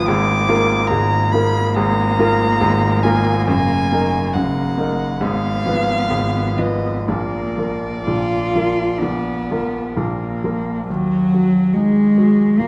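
Elegiac and melancholic, this slow romantic movement for piano trio unfolds in 4/4 with a freely breathing rubato, heard as a short cut from a longer work. A dark-toned violin carries the melody with a smooth top, and a cello sings a second line beneath it, its bow airy. Both strings play sul tasto with light vibrato, soft attacks and an intimate, close presence. A clear grand piano sits up front with long sustain and audible action noise, all within a moderate recital hall reverb, and a new section begins at 10.9 s.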